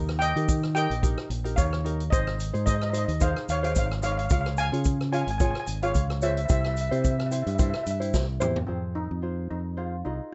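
A rough home demo mix in a small room, its highs rolled off, carries this bittersweet, cool calypso, cut from a longer piece and moving at 110 BPM in F minor with a light sixteenth-note swing. Up front, a shimmering double seconds steel pan struck with hard rubber sticks sings the melody through a slapback echo. Alongside it sit a thumb-plucked tenor ukulele, a bright, direct fingered electric bass and a swinging big-band drum kit with a medium-tuned snare and a punchy kick, while a grainy egg shaker sits in the background; the drums play a fill from 8.1 to 8.7 seconds as the chords travel from Eb7 through Ab, Db and C to Fm7.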